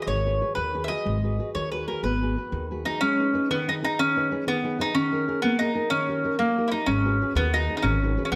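Sunny and romantic, this short excerpt of an Italian folk serenade in a straight 6/8 sets a mellow, round mandolin melody up front over a full-bodied, fingerpicked nylon-string guitar with audible finger squeak, while a woody pizzicato upright bass drops out at 2.8 seconds and returns at 6.9 seconds, all bathed in a moderate recital-hall reverb.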